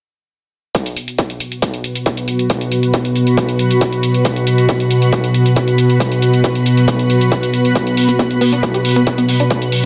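Relentless and intense, this excerpt of driving peak-time techno at 137 BPM opens at 0.7 s with a distorted, layered kick and warm hi-hats, both carrying the air of a large room. From 1.5 s an up-front, warbling vintage drone pumps under sidechain on a low B, soon joined by a blurred, cloudy granular pad in its own reverb above a B5 chord. At 8.1 s a tight, detuned sawtooth riff with chorus, phaser, overdrive and tape echo slips in from the background, all set in light digital ambience.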